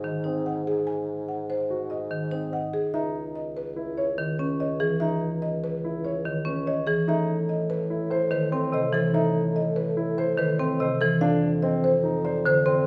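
This excerpt from a longer classical piece in the minimalist pattern style opens with all four parts sounding together. A woody, buzzing marimba played with medium mallets carries the melody, while a second marimba struck with hard mallets sits up front with a bright, percussive accompaniment in a lower register. A dark concert grand piano spins arpeggios through the middle, and a mellow bassoon with vibrato plays the bass line. At 145 BPM in a straight 5/4, the music in C# minor feels both meditative and urgent, moving from G#7 to C#m at 2.9 seconds and on to Amadd9 at 7.1 seconds. A wet recital hall reverb surrounds the ensemble, with a faint mains hum underneath.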